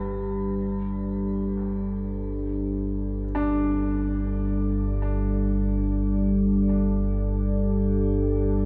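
A deep rumbling drone, dark and up front with phaser and lush chorus, fades in beneath a moody, wave-folded pad of sustained G5 chords with shimmer reverb, while a clear, boxy grand piano traces short-sustained arpeggios through delay and a metallic singing bowl rings with slow beating, all in free time and swallowed by a cavernous cathedral reverb in this ominous 8.7-second dark ambient excerpt.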